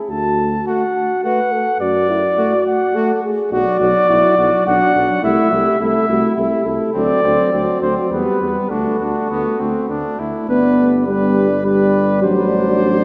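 A mellow cornet carries the melody up front, singing with vibrato and a soft attack from 0.1 s in this noble classical brass quintet, heard as a short section cut from a longer piece. Around it, a distant, roomy French horn holds the accompaniment in the background with light vibrato, while a euphonium with a smooth top fills the middle and a bass trombone anchors the low end. From 0.7 s a clear trumpet adds a second line with light vibrato and a gentle onset. The music moves at a steady 105 BPM in 3/4 with a straight feel, settling into G major from 3.5 s as the harmony passes through D, Bm, Am/C, D7 and Em before arriving on G. A wet church reverb with a long 2.8-second decay surrounds the ensemble, giving the whole quintet a spacious, resonant glow.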